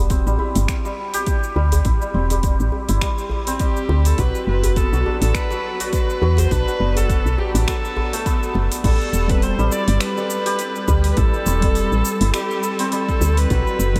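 Shimmering santur arpeggios with delay open this meditative, mystical organic downtempo excerpt at 103 BPM in A dorian over a woody, round FM bass that pumps up front, joined by an overdriven deep house kit with metallic hats, cabasa and finger snaps, a deep layered electronic kick and a very quiet, cracking djembe until 8.8 seconds, while a smooth bowed kamancheh with vibrato and portamento enters at 3.6 seconds and a worn, slightly out-of-tune tine electric piano arrives at 9.3 seconds, all within a dreamy mix soaked in huge ambient reverb.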